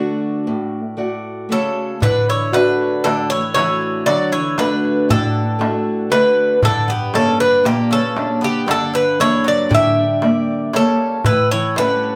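Tender and warm in mood, this short cut from a longer Greek folk piece for bouzouki band moves in a straight 9/8 feel. A bright, metallic bouzouki sits up front with the melody, its picked double strings, some doubled at the octave, carrying an analog delay. A second bouzouki plays a lower supporting line with a softer, mellower tone, while an old ladder-braced acoustic guitar, dark and boxy with audible finger squeak, supplies close-up picked accompaniment. At 2.0 seconds a darbuka with a metal shell joins, crisp, large and deep, with a compressed, saturated edge. The harmony moves from D to Gm at 6.6 seconds and reaches A7 near the end, all set back in a room with a lush, short studio reverb.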